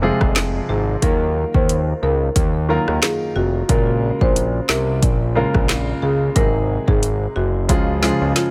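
A natural-sounding baby grand piano and a fat, nasal analog bass open this short dancehall cut from a longer piece, setting a tough, hypnotic, swung groove over chords that move from Fm through Ebmadd9, Bbm7 and Ab7 to Db. At 0.2 seconds an up-front, overdriven afro-pop kit joins with a deep kick, woody snare, metallic hi-hat, rim clicks and handclaps, and at 0.7 seconds a rosewood marimba played with medium mallets carries the melody through a digital delay. The sound is dry and close, with little reverb.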